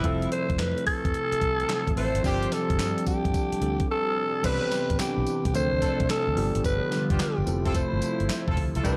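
A swung sixteenth-note groove at 109 BPM drives this flirty, bouncy new jack swing excerpt, built on a crisp, up-front 8-bit drum machine with a thumpy kick, medium-tuned snare, handclaps, hi-hat, tambourine and crash, under a round, punchy, foam-muted fingered electric bass. A breathy, raspy alto saxophone with vibrato and tape echo carries the melody until 8.5 seconds, over bell-like tine electric piano accompaniment, tight jazz-style horn stabs and a swirling, nasal analog pad with phaser and chorus in the background. The chords move from Fmaj7 and G7sus4 through Cmaj9, Dm7 and G7 back to Fmaj7, with a brief silent gap at 3.9 seconds, all set in moderate digital room reverb with a dark production.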